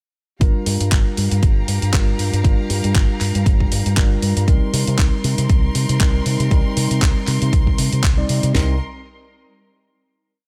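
Nu-disco at 118 BPM in C minor, cosmic and sensual, built on a punchy four-on-the-floor house kit with cracking snare and toms, a gritty sampler-style layer of claps and hi-hats, a round, dark fingered bass jumping octaves through an envelope filter, mellow tine electric piano holding Gm7 and Cm7 chords with syncopated pushes through analog delay and sidechain pumping, and a rich, vibrato-laden chamber string pad that also pumps, all kept dry and close before a final chord rings from 8.5 seconds.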